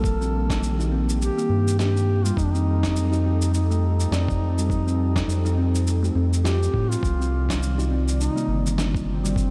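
A dark, vibrato-laden duduk sings a folk-style melody with scooped notes over a warbling, nostalgic tape-like pad, a round, deep analog bass up front, and gritty sampler-style drums with an overdriven, thumpy kick and a small-room shaker and snare, all at a swung 103 BPM in an earthy organic downtempo groove. A woody, hollow-sounding kalimba rings out delayed arpeggios in the background as the chords move from Ebmaj7 to F9 to Cm, and a pure, very quiet quartz singing bowl with slow beating joins at 7.0 seconds. The dreamy mix is soaked in cathedral reverb, with sidechain pumping on the chorused pad and delay on the duduk.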